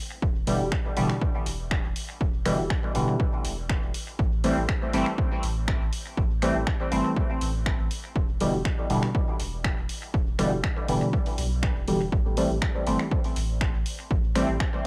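A straight 4/4 pulse at 121 BPM drives this deep, hazy dub techno piece in A minor, anchored by a punchy, overdriven electronic kick that sits up front from 0.2 seconds. Around it, a punchy analog drum machine adds finger snaps and hi-hat, its overdriven hits thrown into dub echo and re-recorded in a large room. Beneath, a soft, round sub bass built from triangle and square waves holds sustained low notes, pumping with sidechain against the beat. The focal point is a bright, juicy polysynth of detuned pulse, sawtooth, sine and wave-folded tones, playing resonant stabs through chorus, phaser and dub echo while a filter sweep evolves across its first 12.1 seconds. The chords move from Em7 to Am7 and back, returning to Am7 at 12.1 seconds. Light reverb and the grainy character of a home cassette recording give this fragment of a longer track its lo-fi haze.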